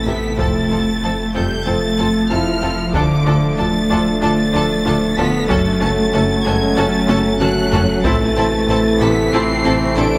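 Drenched in a wet scoring-stage reverb, this futuristic, relentless hybrid orchestral and electronic film cue, cut from a longer piece, sets a lush, vibrato-rich high violin melody and a distant second violin line over background violas, close cellos, focused double basses and a deep, saturated sub bass, with mellow French horns, punchy trombones and a very quiet, swarming, detuned drone holding sustained chords, a harp-like synth pluck ringing out arpeggios, a soft felt-muted upright piano with audible action noise and tape echo adding texture until 5.5 seconds, and a background taiko ensemble on heavy sticks driving the straight 4/4 pulse through a drum fill from 7.1 to 8.1 seconds.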